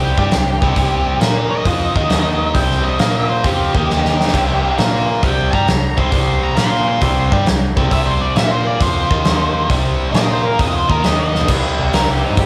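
A swung 4/4 groove at 134 BPM drives this gritty, driving blues rock power trio fragment with a southern rock edge, where a bright, double-tracked overdriven guitar riff on C5, Bb5 and Eb5 power chords sits up front beside a dark, fuzzed octave lead melody, a round, foam-muted fingered bass and a big acoustic drum kit with a fat snare and punchy kick that enters at 0.2 s and adds fills at 3.9 s and 11.3 s, all captured as a band playing live in one room with moderate large studio reverb.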